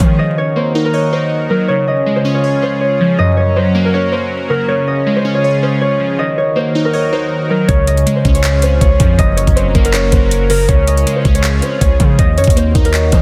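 Hip hop and trap in Db major at 160 BPM with a half-time feel, this dreamy, wistful fragment opens on a ringing, thumb-plucked concert harp melody up front, over glassy, airy digital keys with a filter sweep and an evolving, full-bodied detuned pad, both thickened with chorus. A very quiet, round, octave-layered synth lead with vibrato adds a brief second line in the harp's register from 0.4 s. At 7.7 s the lead returns alongside a deep, decaying 808-style bass and an up-front trap kit of knocking kick, metallic hi-hats and handclaps, both of which sound only for a moment at the very start. Everything sits in light reverb under a dense, heavily limited master with vinyl crackle.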